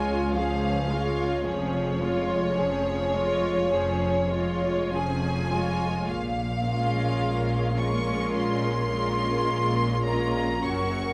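A focused, up-front violin section sings the vibrato-rich melody of this serene, tender excerpt from a slow romantic movement for string orchestra, flowing in free rubato over a smooth second violin line, lush violas and cellos, and an even double bass foundation, all bowed and set in the moderate reverb of a scoring stage.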